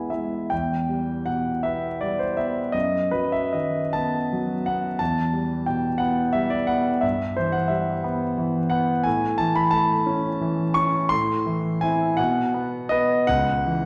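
A warm concert grand piano carries this short passage from a longer romantic character piece, its tone intimate and polished, with deep bass, long sustain and audible action noise, the instrument placed up front. The solo sits in E minor in 6/8, moving freely with rubato at roughly 47-61 BPM counted in dotted quarters, and the mood is hopeful and warm. The harmony passes from E minor through B7 over F# and back to E minor, then on to E minor over G, A major and A minor. A brief unharmonized moment arrives at 12.2 seconds, followed by a turn to C# minor at 13.3 seconds. The playing spans C#2 to C#6, wrapped in a wet recital hall reverb with a 1.4-second decay and a dark overall production.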